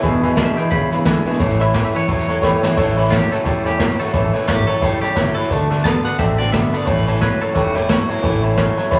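Retro and rollicking, this swung rockabilly excerpt at 176 BPM in A major rides on a brushed jazz kit with dark cymbals and a boomy kick, a thumpy gut-string upright bass, and a bright, compressed twangy electric guitar riff, while a second, clean electric guitar carries the melody up front from 0.4 to 8.4 s, a full-bodied jumbo steel-string acoustic guitar and a boxy, woody upright piano fill in the background, and the rough rehearsal-room recording adds tube saturation and a wet booth ambience, with a drum fill at 2.4 s leading into the second section.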